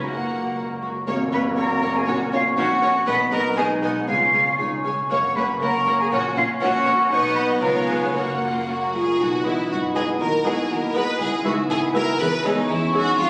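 Playful and magical, this whimsical cinematic cue, cut from a longer piece, moves in a straight, brisk two-beat metre. A lush violin section carries the melody in the background with expressive vibrato and portamento. A distant, airy flute plays a woodwind second line, joined by a very quiet, roomy clarinet, and a second violin section adds its own expressive counterline. A smooth viola section, a distant cello section and a double bass section give bowed accompaniment and bass, while a very quiet French horn section holds soft-edged sustained chords and a fingerpicked concert harp rings out arpeggios across its full range. A bright, very quiet tam-tam sounds at 1.1 seconds, the medium-mallet marimba returns to the melody at 8.4 seconds, and a gentle oboe with light vibrato returns to the upper lines at 9.4 seconds as the harmony shifts into a new passage. A stone-room reverb surrounds the ensemble, and the sound carries the character of a phone capturing a live room.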